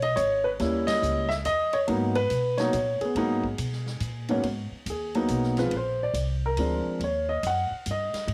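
A smoky, cool jazz piano trio excerpt in a swinging 3/4, where an intimate, up-front upright piano with audible action noise and long sustain carries the melody and takes a solo from 4.4 seconds, over a woody, thumpy pizzicato upright bass and a big-room drum kit with a boomy kick, ride and hi-hat, the whole trio hitting a band accent at 0.8 seconds amid moderate spring reverb and small room ambience.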